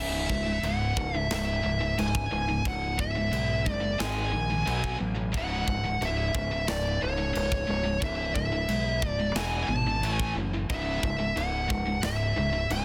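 A dark, high-gain lead guitar with distortion and delay sings over a bright, double-tracked distorted riff guitar and a growling overdriven fingered bass from the start, joined at 0.3 s by a tight, polished metal drum kit with china cymbal, snare and kick in an airy big room, as this aggressive heavy metal excerpt in C# minor pounds along at 90 BPM through C#m, G#5, B5, E5 and A5 under a dense, heavily limited modern master.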